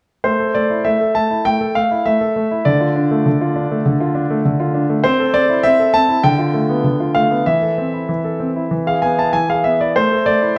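This is a classical-period piano sonatina in A minor, dramatic and elegant in mood, moving at a steady 99 BPM in 4/4 with a straight feel. A solo concert grand piano carries the whole piece from 0.2 to 10.6 seconds, ranging from D3 up to A5, with a clear tone, deep bass and a natural, up-front presence. The harmony opens on an open A fifth, passes through D minor, A minor over C, a half-diminished B chord over D and A minor over E, then reaches E major at 8.7 seconds before settling back on the open A fifth at 10.0 seconds. A recital hall reverb with a 1.3-second decay surrounds the instrument in a wet, roomy ambience, and the overall production leans dark. This short passage is cut from a longer piece.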